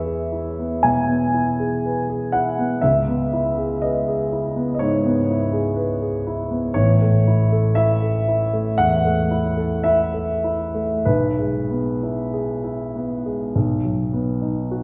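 Classical romantic nocturne for solo grand piano in E major, tuned to A4 = 438 Hz, dreamy and nostalgic, drifting in rubato 4/4 at a slow 46-62 BPM, its present, polished, up-front tone spanning A1 to G#5 and blooming into the wet reverb of a recital hall as the harmony moves from E through C#m7 and A to E/B before arriving on B at 13.5 seconds in this short passage cut from a longer piece.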